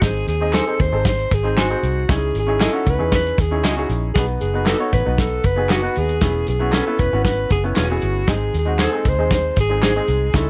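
Joyful, danceable uptempo 1960s-style soul at 116 BPM, cut from a longer piece, where a breathy, close-miked alto saxophone sings an intimate melody with vibrato and scooped notes over a woody upright piano in plate reverb, a dark, round, foam-muted fingered electric bass, a dry, up-front drum kit with a tight kick, twangy, slightly broken-up electric guitar stabs in spring and plate reverb from 0.5 to 9.9 seconds, and background tambourine, egg shaker and group handclaps, moving through G#, C#madd9, B and E6 before returning to G#.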